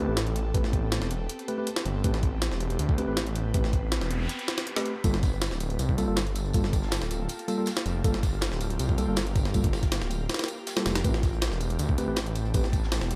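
Drum and bass with a jungle edge at 160 BPM, this raw, nostalgic excerpt opens on an ethereal pad carrying chorus, reverb and phaser, mellow tine electric piano stabs roughened by 12-bit sampler grit and dub echo, and a thick, menacing detuned saw bass up front, over Am9 shifting to Gm9 at 5.0 seconds. A compressed, pitched-up jungle kit with a thumpy kick and high-tuned snare drives from 0.2 seconds. After a brief break and electronic noise sweep, a dark, saturated breakbeat kit with tambourine and rolled-off top joins in the background at 5.0 seconds, and the chords return to Am9 at 11.0 seconds in a dry mix.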